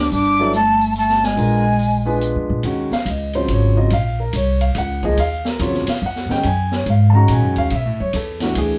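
A swinging three-four lilt drives this cool, spiritual modal jazz excerpt, played live by a band in one studio room with a moderate, natural ambience. A breathy, chiffy flute carries the melody up front with vibrato and crisp attacks, shadowed by a scooping, vibrato-rich bass clarinet; both fall silent at 2.2 s. That leaves the woody, thumpy pizzicato of the gut-string upright bass, an acoustic drum kit with a high-tuned snare and boomy kick, and a deep-voiced grand piano that entered at 0.4 s, as the harmony settles into a long stretch on Ebm11 before turning to Bm7 near the close.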